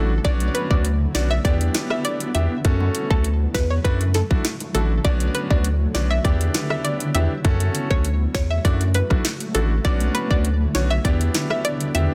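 A detuned analog pluck with chorus and delay carries the melody over a brilliant grand piano with audible action noise, a blurred, pumping granular cloud pad and a thick, saturated sub bass, before an overdriven island pop drum kit with a tight kick and metallic hats and a soft, low-tuned pair of bongos join at 0.2 seconds in this sultry, tough dancehall excerpt at 100 BPM in B minor, cycling through Bmadd9, Em7, F#m and Dadd9 in a dense, dry, heavily limited mix.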